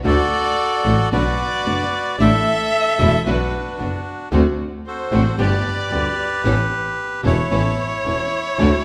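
Nostalgic and playful, this short tango cut from a longer piece moves at 112 BPM in D major with a rubato feel, as a reedy, bright bandoneon carries the melody up front over a bowed double bass with focused vibrato, fingerpicked flamenco guitar accompaniment with audible finger squeak, a boxy violin second line sliding with portamento, and lush orchestral string stabs sitting in the background, all in a moderate recital hall reverb through chords from D and Bm to G and Aadd9.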